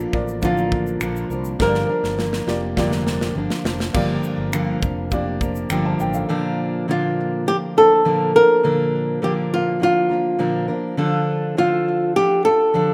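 This easy-going, heartfelt acoustic pop excerpt in Bb major opens with a flamenco guitar carrying the melody up front, its fingerpicked line touched with delay. Beneath it sit a full-bodied, fingerpicked steel-string jumbo guitar, a woody, boxy upright piano with short sustain, and a growly, amped fretless electric bass, while a polished studio drum kit with a tight kick, medium-tuned snare, shaker, finger snaps and crash cymbal sets a straight 102 BPM in 4/4. A drum fill begins at 1.6 seconds as the harmony moves from Bb to Gm7. The piano, bass and drums drop out by about 6.4 seconds, leaving the steel-string guitar to play alone until the flamenco guitar returns at 6.9 seconds over a Bb chord that later shifts to Dm. A moderate plate reverb with a two-second decay surrounds the whole thing, though the mix keeps the rough feel of a home demo.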